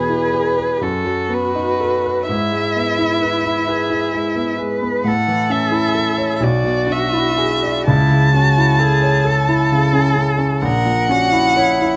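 Rubato in a lilting 6/8 with uneven, breathing beats sets the pace of this slow romantic movement for piano trio, a serene classical passage cut from a longer piece. The warm violin carries the melody up front, sung by a single bowed player with expressive vibrato and portamento. Beneath it, a rich cello traces a second line in a narrower range, its soft attack, vibrato and gliding portamento giving the voice a gentle, expressive shape. A clear grand piano, natural in tone and also placed forward, supplies the accompaniment across a broad span from deep bass to the middle register. The harmony moves unhurriedly through major chords, dominant sevenths and inversions, touching A major at 5.1 seconds and closing on F#7/A# at 10.6 seconds. Close, detailed microphones and a light reverb keep the sound intimate and present.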